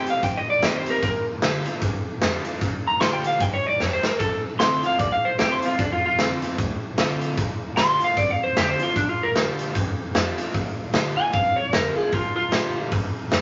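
Rockabilly at 151 BPM with a swung 4/4 feel in Bb mixolydian, rowdy and retro, cut from a longer piece, with chords moving through Eb6, Bb6 and F6. A twangy, slightly broken-up electric guitar through a small old amp carries the melody up front, backed by a bright, full-bodied jumbo acoustic guitar with audible finger squeak, a woody, thumpy pizzicato upright bass on gut strings sitting in the background, and a saturated, gritty garage drum kit with a punchy kick and pumping stone-room ambience that lands a fill at 3.8 seconds. The sound carries moderate studio reverb and vinyl crackle with dulled highs, and at 10.5 seconds the music shifts to a new section where the electric guitar takes a clean solo.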